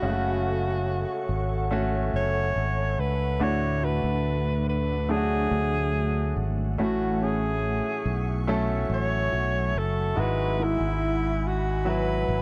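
A dry, close 1970s-style studio sound with small-room ambience frames this hopeful, heartfelt pop fragment in A major at a slow 71 BPM, moving through F#m, D, A6 and Eadd9/G#. Up front, a warm, jazz-style alto saxophone sings the solo melody with vibrato, scooped notes and a smooth top, over a round, punchy fingered electric bass and clear, natural grand piano accompaniment. In the background, a glassy, ethereal FM pad holds slow-attack chords with ensemble chorus and built-in reverb, and a dark, thumb-plucked flamenco guitar joins at 3.4 seconds with arpeggios and audible finger squeak.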